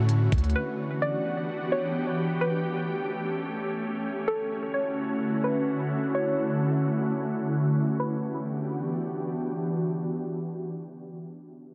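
A half-time 4/4 pulse at 129 BPM grounds this spacious, hazy atmospheric cloud-rap fragment in E dorian: an ethereal, detuned pad with ensemble chorus, built-in reverb and sidechain pumping holds sustained chords until 11.2 s, a deep, mellow sine 808-style bass and a tape-warm trap kit of knocking kick and crisp hats sound only briefly at the opening, and a soft, round, dark pluck carries the melody from 0.6 s through chorus, a low-pass filter and digital delay, all beneath a filter sweep across the first 8.0 seconds and a dense, heavily limited master with light reverb.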